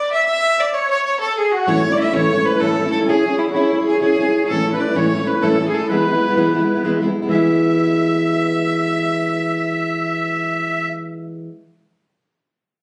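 Captured on a phone in a small, wet-sounding club room, this cheerful, rollicking Celtic slip jig in 9/8 sets a woody, close fiddle with light vibrato on the melody over a reedy, shimmering musette accordion second line, while an up-front, fingerpicked plugged-in steel-string acoustic guitar adds warm accompaniment from 1.7 s through harmony moving among A, C#m and E, carrying on alone once the fiddle and accordion stop at 10.9 s and playing through to 11.5 s.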